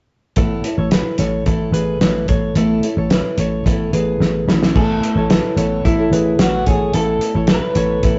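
A twangy, slightly broken-up electric guitar, played through a small old amp with spring reverb, carries the melody from 4.8 seconds, arriving after a drum fill and sitting between E4 and B4. This is a bright, youthful piece of jangly indie pop at 110 BPM in straight 4/4, in A major and opening on an Aadd9 chord. Underneath, a clean, compressed electric guitar recorded direct picks arpeggios, while a full-bodied jumbo steel-string acoustic with fresh strings picks an accompaniment in the background. A round, punchy foam-muted bass holds a low A1 up front alongside a cloth-damped, thuddy kit with a fat snare, tight kick and dark cymbals. The rough rehearsal-room recording has light reverb, tube saturation and a rolled-off top end, and the excerpt is cut from a longer piece.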